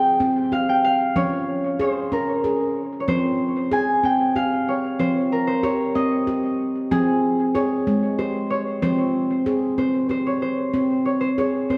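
World meditative music, hypnotic and gentle, moving at 63 BPM in 6/8 in F minor, where a ringing nitrided-steel handpan played with the fingertips lays down airy arpeggios beneath a thumb-plucked acoustic concert harp melody, both parts up front and touched with tape echo inside a wet concert-hall reverb, before the harmony shifts to Abadd11/C at 10.7 seconds in this short fragment of a longer piece.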